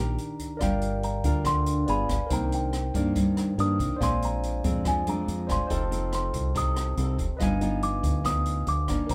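A live small-room sound frames this breezy, relaxed bossa nova fragment at 141 BPM, where a delicate, bell-like celesta carries the melody over dark, fingerpicked nylon-string guitar and a round, punchy electric bass sitting up front, while an acoustic jazz kit with a boomy kick, hi-hat and rim click joins at 0.2 seconds and a bright, barky, lightly overdriven tine electric piano adds its comping from 0.6 seconds through jazzy changes from Ebmaj7 and Cm9 to a tense G7b9b13.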